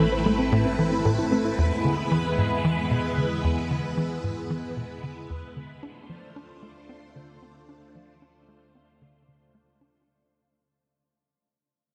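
Swirling, phased string-machine chords open this expansive, cosmic ambient passage at 113 BPM in 4/4, together with a punchy sawtooth sequencer bass riff, a resonant analog drone low in the background, and soft, round pluck arpeggios that drop away after 1.5 seconds. The bright, vintage strings sit up front with ensemble chorus, while the bass carries delay over a harmony that moves from Am to E and then Dm7 at 5.8 seconds. A vast cathedral reverb bathes the whole texture as it fades out, cut from a longer piece.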